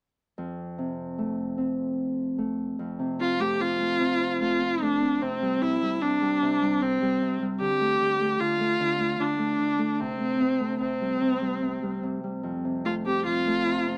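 A thumb-plucked Celtic harp opens this sleepy, innocent children's lullaby excerpt at 0.4 s with ringing, warm accompaniment in a rubato 3/4, and at 3.2 s a single bowed viola takes the melody up front, its rich, nasal tone focused with vibrato and a smooth top, the pair captured in a dry, close 1970s-style studio sound with light reverb.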